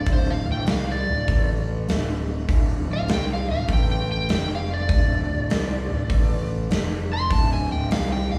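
Blues rock in a power-trio mold with a southern rock lean, this heavy, brooding excerpt moves at 100 BPM in 4/4 with a swung eighth-note feel, centered on D minor. An overdriven slide guitar carries the melody as a solo across the whole 8.4 seconds, its dark, fingered tone dressed in plate reverb and slapback echo. Underneath, a fuzz-drenched picked electric bass sits up front, growly and punchy with its own overdrive, while a big acoustic rock kit enters at 0.1 s with hi-hat, a boomy kick and a medium-tuned snare set in a large room sound. The harmony opens on Dm7, briefly steps away from any defined chord at 1.3 s, then returns and wanders through suspended and added-eleventh shapes before settling back on a D minor color. The whole thing comes across as a live gig heard through the venue's PA, with light reverb, recital-hall spaciousness and a small-room ambience around the band.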